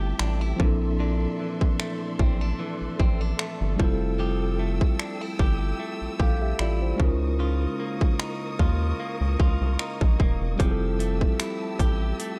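Dreamy and romantic, this contemporary R&B excerpt at 75 BPM in F major sets a tine electric piano and lush, bowed strings over a direct, bright clean guitar playing arpeggios with delay, a rubbery, hollow square bass up front, and an overdriven trap kit of finger snaps, metallic hats and a hard-clipped kick entering at 0.2 seconds, all moving through Fmaj9, Bbmaj9#11 and Db69 in a digital ambience.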